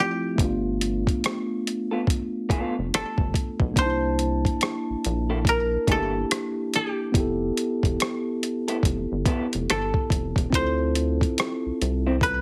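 A woody koto played with fingerpicks opens this late-night, smooth R&B and neo-soul excerpt, carrying the melody with slapback echo over a mellow tine electric piano, and a swung sixteenth-note groove at 71 BPM from a gritty, thumpy boom bap sampler-style drum kit and a rubbery, nasal square bass joins at 0.4 seconds as the harmony moves from G9 through C13 and Fmaj9#11 to Dm9, while a twangy, slightly broken-up electric guitar through a small old amp, also with slapback echo, adds a second line from 1.9 seconds, all set in light reverb with a heavily compressed radio sound.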